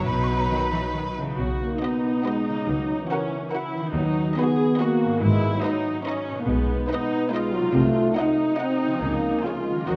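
A playful, whimsical cinematic film cue in B major, moving at 141 BPM in a straight 3/4. In this excerpt a bright, pure wooden flute sounds only until 1.1 seconds. The flute sits over a clear violin section melody set in the background, a darker, woody second violin line, an expressive viola accompaniment placed up front, ringing harp arpeggios, and a bass of lush cellos and smooth, even double basses. From 1.2 seconds a tight, mellow French horn section comes forward with sustained chords, and the whole ensemble sits in a wet concert hall reverb as the harmony winds through G#m and a Cdim7 before resting on C#.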